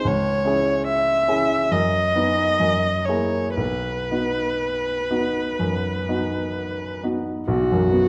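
The recording has a dark, warm production with some lossy compression artefacts, set in a recital hall whose moderate reverb adds a soft halo. This short romantic classical passage for viola and grand piano is cut from a longer piece. It feels serene and tender, moving with a flexible rubato in 4/4. Up front, a single bowed viola carries the melody with a rich, focused tone, vibrato and a smooth top. The grand piano accompanies close by, its clear, vintage voice letting notes decay quickly. The harmony drifts from C#m through B/F# and F#9 to settle on B at 3.6 seconds, and a bare B5 arrives at 7.5 seconds before the passage ends at 8.1 seconds.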